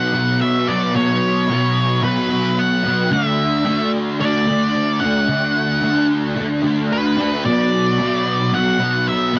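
This is a short rock excerpt in a straight 4/4 at 111 BPM, set in D major with a wistful, blissful mood. A double-tracked fuzz guitar sits up front and carries the riff in its low range from B2 to D4, its picked tone warm and distorted and thickened by an ensemble chorus. Above it, an octave-fuzz lead guitar plays the melody between B4 and F#5, a darker picked voice that sits lower in the mix and is coloured by distortion, cassette tape and tape echo. Both guitars play throughout the 9.4 seconds as the harmony moves from a B5 power chord to D at 3.1 seconds and then to Bm at 7.5 seconds. The sound is a home recording on cassette, placed in a small room with a moderate reverb.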